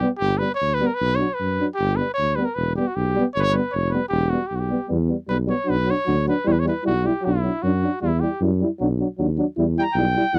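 A warm, up-front trumpet carries the melody of this bittersweet, restless Balkan brass band cut, moving at 154 BPM in a swung 2/4 with a Dorian lilt, and it takes a classical-style solo from 4.9 seconds. Beneath it, a dark, jazz-inflected tuba holds the bass with scooped notes and light vibrato, while a mellow, close-miked euphonium and a second, vintage-toned euphonium with vibrato fill out the accompaniment over chords shifting among G, Bm and Em. The sound is dry and close, like a 1970s studio session, and this passage is cut from a longer piece.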